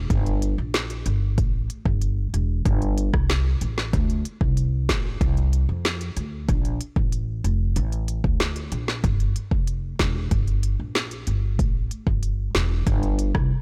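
A blown-out, overdriven recording with little reverb gives this tough, hypnotic dancehall cut at 94 BPM a dry, saturated punch. A dark, thumpy pizzicato upright bass with steel strings sits up front from the start, and an electronic afro-pop kit joins at 0.1 s with a deep kick, woody snare, rim clicks and crisp hi-hats. The two parts carry the piece together through to 13.5 s.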